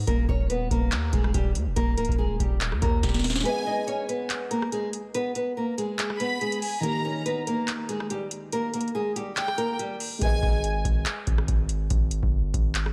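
Soaked in dreamy plate reverb over a faint mains hum, this brooding, hard-hitting hip hop and trap excerpt at 142 BPM in G# harmonic minor, with a half-time feel, carries a small, fingerpicked nylon-string guitar melody with tape echo over a booming, dry analog drum machine of deep kick, crisp snare, metallic hats, handclaps and rim clicks, while a punchy, heavy 808-style bass drops out for a break from 3.5 to 10.2 seconds, as a boxy, mellow felt-muted upright piano with lush chorus and a sul tasto chamber violin section with light vibrato and tape echo enter.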